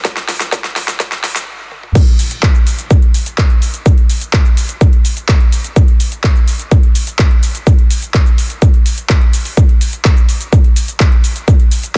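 A dense, heavily limited modern master with a high-pass filter and little reverb gives this EDM cut, taken from a longer piece, a tight and forceful sound. It opens on a short build-up with a filter sweep and a drum fill, then breaks into a brief stop at 1.5 seconds before the drop lands at 2.0 seconds and carries on to the close. Out front, a punchy, layered electronic kick drum, re-recorded in a small room, drives the straight 4/4 groove. Behind it, an overdriven big-room dance drum kit adds a huge snare, metallic hi-hats, handclaps, shaker, toms and crash cymbal. The result feels triumphant and uplifting, built purely from drums that hit hard.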